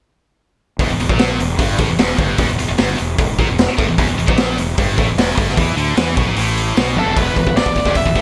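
Hard rock at 151 BPM, energetic and anthemic, built on a bright, double-tracked high-gain guitar riff over a round, fuzzed fingered bass and a gritty garage drum kit with a high-tuned snare, punchy kick and gated reverb, all in a light small-room ambience with bright 1980s-style digital polish; at 7.0 seconds a drum fill arrives as a dark, bluesy overdriven lead guitar with digital delay joins for the closing moments of this cut from a longer piece.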